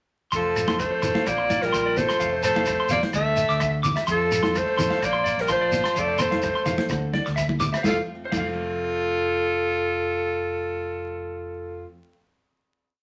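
An up-front clarinet, with light vibrato and scooped notes, carries a jazzy, motif-based song melody through this danceable, carefree highlife guitar band piece, joined by a breathy, edgy alto saxophone playing a harmony line mostly in thirds. Beneath them a clean hollow-body electric guitar picks sixteenth-note arpeggios in threes, a full-bodied acoustic guitar with audible finger squeak plays syncopated fingerstyle in the background, and a round, amped fingered bass holds a syncopated figure. A gritty, saturated breakbeat kit with dark cymbals, a grainy shekere and damped congas drive the groove until 8.5 s, after which the band sustains a final chord in wet reverb over vinyl crackle.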